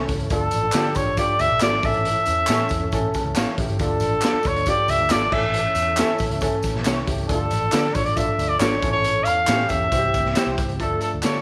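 A moderate echo-chamber reverb gives this short excerpt of uptempo 1960s-style soul a roomy studio glow as it drives along at 137 BPM in 4/4, with a straight, passionate feel in D harmonic minor. The raw garage drum kit sits up front, saturated and gritty in a small, pumping room, with a punchy kick, a medium-tuned snare, hi-hat and crash, while a dark, round, foam-muted electric bass anchors the low end. An upright piano, woody and slightly detuned, carries the accompaniment and breaks out with a fill at 2.9 s. Beneath it, a very quiet tonewheel organ holds lightly overdriven chords with key click and a slow rotary speaker until 10.8 s, and a compressed, slightly broken-up electric guitar adds picked stabs in the background. From 0.3 s a punchy trumpet with vibrato takes the solo melody, up front yet distant and roomy, over close, dry tambourine and group handclaps as the chords move between Dm and A before touching C and returning to Dm.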